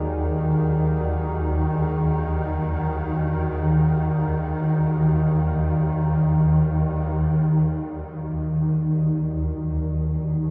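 A desolate dark ambient drone in free time and Eb harmonic minor, cut from a longer piece, resting on an Eb minor chord: an up-front swarming drone, detuned and granular with ring modulation, holds the low register while a deep, warbling pad with chorus and shimmer reverb sustains chords in the background. A bronze singing bowl, close-miked and metallic with slow beating, rings barely audibly until 7.1 seconds, as the pad fades out over that span. After 7.1 seconds a filter sweep moves over the drone, all set in a huge ambient reverb.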